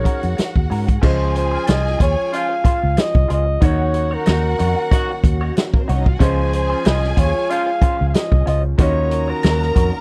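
This excerpt of lush 1970s-style soul opens with a warm, present flugelhorn singing the melody over a studio string section, a brilliant grand piano, a twangy wah guitar riff and a round, foam-muted fingered bass, with a vintage drum kit joining a split second later. The drums sit up front with a punchy kick, a medium-tuned snare and dark, rolled-off cymbals. The groove has a gently swung sixteenth-note feel. The bowed strings carry a smooth second line full of vibrato and portamento, touched by a slapback echo, while the slightly broken-up, compressed guitar stays in the background. At 1.0 seconds a mellow French horn section slips in beneath with sustained chords as the harmony settles onto a major-seventh chord and moves through minor-seventh colours. A vintage pop-style horn section punches in with stabs from 2.3 to 7.7 seconds, all captured in a dry, close studio sound.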